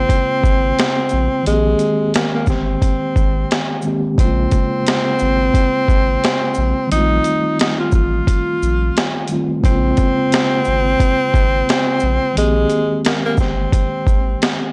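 A swung boom bap groove at 88 BPM in 4/4 drives this reflective, nostalgic lo-fi hip hop excerpt in Bb dorian, its sampler-style kit pitched down and compressed, with a thumpy kick, a high-tuned snare, hi-hat, shaker and finger snaps carrying a vintage 12-bit grit and a large-room sound up front from 0.1 seconds. Underneath, a deep, full sub bass with octave sits low on a sine-and-triangle tone, its fast attack giving way to sustained notes. A mellow tine electric piano, clean and heard through its built-in speakers, plays through chords moving from Bbm9 to Abmaj9 and F9. Up front, a breathy tenor saxophone plays a smooth jazz solo with subtone, vibrato and scooped notes spanning Ab3 to F4. The whole track has a dry, gritty, cassette-tape character with light reverb, and it ends around 14.7 seconds as if lifted from a longer piece.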